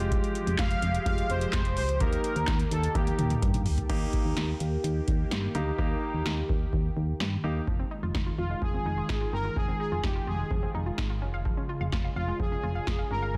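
An excerpt of melancholic, nocturnal synth-pop opens with a polished baby grand piano, a swirling phased pad in the background, a round, punchy FM bass and an up-front electro drum machine with deep kick, punchy snare and metallic hats, as a bold, nasal synth brass melody with chorus and tape echo enters at 0.6 s, a drum fill rolls through at 3.0 s, and the piano drops out as a bright, detuned analog pluck arpeggio joins at 7.7 s under light reverb in a dense, heavily limited master.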